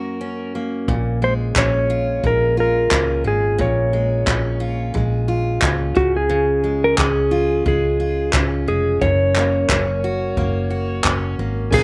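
Acoustic pop with an easy-going, heartfelt mood, where a dark, clean lap steel guitar carries the melody up front with slapback echo over a full-bodied picked steel-string acoustic guitar, joined at 0.9 seconds by a round, foam-muted vintage electric bass and a jazz brush drum kit with a punchy kick, dark cymbals and handclaps, while a tonewheel organ with slow rotary speaker sounds only at 11.7 seconds in this dry fragment of a longer piece.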